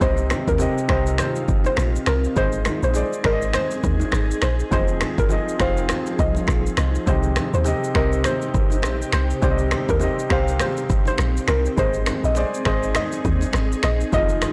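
This smooth, mellow afrobeats passage in C minor, cut from a longer piece, opens at once with its full band at 102 BPM with a swung sixteenth-note feel. A soft, round pluck carries the melody in a narrow upper range, its detuned, wave-folded tone softened by chorus and digital delay, while a warm grand piano supplies accompaniment across a broad span of the keyboard. Beneath them, a glassy FM pad holds ethereal sustained chords with a slow attack, long release, ensemble chorus and its own reverb, moving through Cm, Ab and Fm7 before returning to Cm and Ab. A deep, dark log drum bass sits prominently in the low end with a fast, percussive attack, and an electronic afro-pop kit of finger snaps, deep kick, rim click and shaker stays up front, the snare carrying soft clipping. Ringing acoustic congas and bongos played with hard hands sound distant in a large room, tucked into the background, and the overall recording is blown-out and overdriven, giving the 14.5-second passage a gritty edge.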